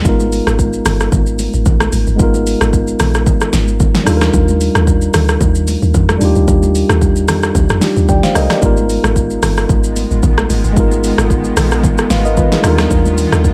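Relaxed and warm, this amapiano excerpt at 112 BPM swings gently in 4/4 over Abm6 and Ebmaj9 chords, with a mellow, clean tine electric piano up front, a deep, round log drum bass with a dark, decaying thud, a layered deep house kit of fat snare, deep kick, rim click, hi-hat and shaker with a tape-tinged small-room punch, faint ringing high-tuned congas, and a blurred, cloudy granular pad with built-in reverb and tremolo drifting in at 9.9 seconds.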